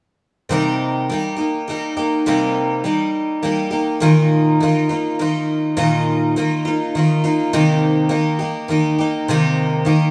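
A bright, shimmering, octave-doubled twelve-string acoustic guitar sits up front and plays a solo from 0.5 to 10.1 seconds in this reflective, wistful rock fragment at 103 BPM in 3/4, moving through Cm7 and Bbsus4 in C minor, tuned to A4 = 436 Hz, within a moderate stone room reverb.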